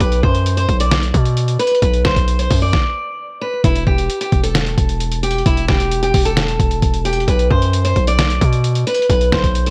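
A picked steel-string acoustic guitar, boxy and muffled by a low-pass filter with slapback echo, opens this dark, melancholic half-time trap fragment alongside a heavy, saturated 808-style bass and a pitched-down, tape-warm sampler drum kit with a thumpy kick and fat snare, all three up front in a dry mix that drops out in a stop from 2.7 to 3.6 seconds before returning over chords moving from Bm to Emadd11 and back.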